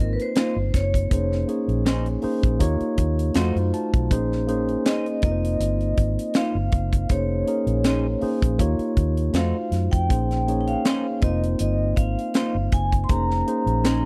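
A dry, close studio sound in the 1970s style frames this short cut from a longer piece of lush soul, smooth and bittersweet in mood, moving at 80 BPM in 4/4 with a gentle 16th-note swing in Bb dorian. A tight funk drum kit sits up front from 0.2 seconds, its acoustic, natural small-room tone marked by a high-tuned snare, a tight kick and hi-hat. Beneath it, a vintage fingered electric bass plays a dark, round, foam-muted line through an amp, also placed forward in the mix. A mellow tine electric piano, clean and heard through its built-in speakers, carries the harmony up front and adds a brief fill at 3.0 seconds, while a semi-hollow electric guitar enters at 0.4 seconds with a dusky, clean, fingered hollow-body riff. Over this, a vibraphone struck with medium hard mallets sings the melody with a metallic, ringing tone, a slow motor vibrato and a boxy small-room character. The chords cycle through F7sus4, Bbm11/F, Eb9 and F7b9 to Bbm11, giving the groove its yearning, unresolved lean.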